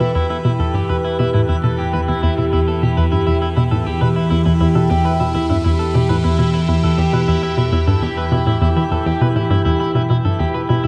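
Ambient, sequencer-driven space music with an expansive, cosmic mood, this brief passage cut from a longer piece rests on a single E minor chord as a hollow, bouncy square-wave pluck riff sits loudest in the low register, with chorus and delay. An evolving, morphing wavetable pad holds bright sustained chords up front through phaser and its own reverb, while a slightly broken-up electric guitar picks arpeggios through delay. A mellow, detuned analog drone enters in the background at 1.1 s, and a very quiet twinkling granular shimmer sparkles high above, all bathed in a long plate reverb within a dark production.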